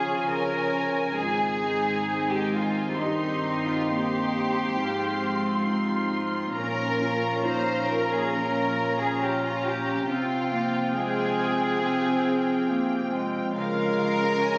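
A cinematic film-score passage in F minor opens with the full string body at once: a dark, woody violin section carries the high melody with vibrato, sounding distant and lush, while a second violin section plays a rich, intimate line up front with soft attack. Beneath them a viola section supplies pure, floating accompaniment, a close cello section anchors the bass with a smooth top, and a mellow French horn section holds tight, sustained chords. A concert harp rings very quietly through fingerpicked arpeggios, and from 1.2 seconds a mellow solo clarinet adds a second line in the background. At 68 BPM in 4/4 with a rubato feel, the harmony moves from Db through Bbm and Fmadd9/C before returning to Db, giving the music a longing, moving character. The strings' sul tasto bowing lends a hushed softness, and the ensemble sits in a moderate scoring-stage reverb, though the sound was captured on a phone in a room with club-style reverb. 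The clip runs 14.6 seconds and is cut from a longer piece.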